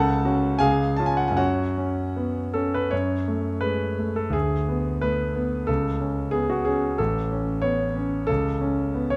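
A clear concert grand piano opens on an F# minor chord, carrying this romantic classical character piece alone in a warm, passionate mood at a flexible, rubato pace of around 76 to 94 BPM in 2/4. Up front and smooth with a deep bass and a vintage color, the piano spans from A1 to A5 as the harmony moves through B minor toward A major colors by about 5.7 seconds. Close, detailed microphones capture the instrument within a moderate recital hall reverb, and this short passage is cut from a longer piece.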